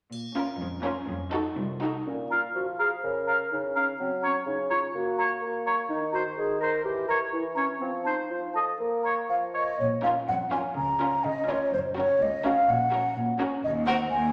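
In a straight 2/4 at 125 BPM, this playful, sneaky film cue in Bb minor opens with lush bowed strings (two violin sections, violas and a focused cello section) and a brief, bright glint of triangle, before the strings drop away at 2.0 seconds. A dark clarinet slips in just before that, and together with a close-miked bassoon, a distant, roomy oboe and an airy, hollow flute it carries a quirky woodwind passage, the flute staying up front as the strings return near 9.8 seconds, now anchored by a smooth double bass section. The excerpt sits in a recital-hall reverb and is cut from a longer piece.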